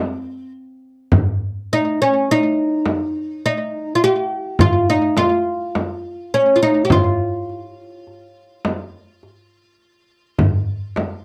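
A fretless, plectrum-plucked oud leads this soulful, longing excerpt of a Turkish makam ensemble, its woody double strings sitting up front with a slapback echo as it carries the melody between C4 and G4-30c. The oud opens alone before darbuka and frame drum join at 1.1 s, and all three play through to 11.2 s as a single section. The piece moves in 10/8 at 104 BPM counted in eighths, with a straight feel, in F makam ussak tuned to A4 = 439 Hz. The small, bright frame drum also sits up front with a touch of live room around it, while the large, deep clay-shell darbuka with its natural skin stays in the background, its tone band-limited and vintage. The close, dry recording carries little reverb and has the character of a 1970s studio session.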